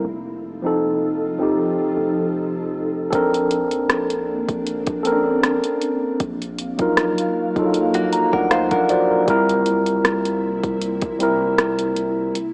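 Smooth and tender, this contemporary R&B excerpt moves at an unhurried 78 BPM in 4/4 with a light 16th-note swing, cut from a longer piece. A mellow tine electric piano sits up front from the start, carrying the chords from F7 through Bbmaj9 and Ebmadd9/Bb to C7, while an ethereal, airy pad drifts beneath with slow-blooming detuned tones, ensemble chorus and its own reverb. A deep, sine-like 808-style bass holds long decaying notes in the background with a touch of tube saturation. At 3.1 seconds a produced drum kit enters with warm hi-hats, a soft kick and rim click, its overdriven sound carrying the character of a small room. Briefly, from 7.9 seconds, a bright, clean, picked guitar adds compressed arpeggios through tape echo alongside an electric piano fill, and the whole recording wears the worn, warbling drift of old cassette tape heard through a small speaker, ending on a break at 12.4 seconds.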